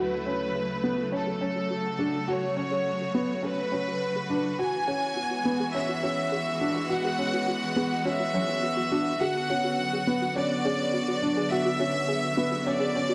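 Cinematic and melancholic, this piano and strings electronica excerpt in F# minor at 104 BPM builds steadily as a clear, earthy violin section carries the melody through a filter sweep and digital delay, a rich, bowed string section holds sustained chords, a felt-muted upright piano repeats an intimate, mellow riff, and a soft, round synth pluck with chorus and vintage 12-bit grit sweeps its arpeggios from 0.1 seconds in the background, all moving through F#m, Eadd9 and Bm inside a lush hall reverb.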